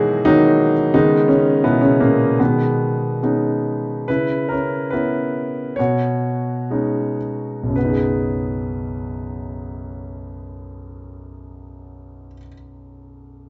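Warm and hopeful, this short classical passage for solo piano unfolds with a lyrical, rubato feel that breathes freely in common time. A single grand piano carries everything, its tone clear, natural and intimate, placed up front so that the mechanical noise of the action is audible beneath the notes. The playing spans from deep bass up into the middle treble, moving through gentle, extended harmonies such as C#m7 and B69. From 0.9 seconds until 7.8 seconds the pace gradually slows, lending the phrases a reflective, unhurried quality. A moderate recital-hall reverb surrounds the instrument, and the production keeps a dark, warm character with the brightest highs rolled away. The music is cut from a longer piece and ends as the piano stops at 13.5 seconds.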